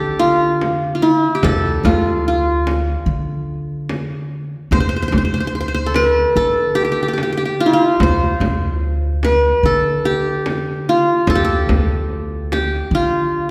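Heard from further back in a wet scoring-stage reverb that lingers about 1.9 seconds, this melancholic, soulful Turkish makam ensemble piece moves in an unhurried, straight 4/4 and is cut from a longer work. The up-front qanun carries the melody between E4-30c and C5, its fingerpicked triple strings bright-edged and warm, while a woody, thumpy pizzicato upright bass with steel strings holds the low end from D2 to D3. A small, compressed and saturated frame drum struck with hard hands enters at 0.6 s and stops at 12.7 s, adding bright, acoustic color to the ensemble.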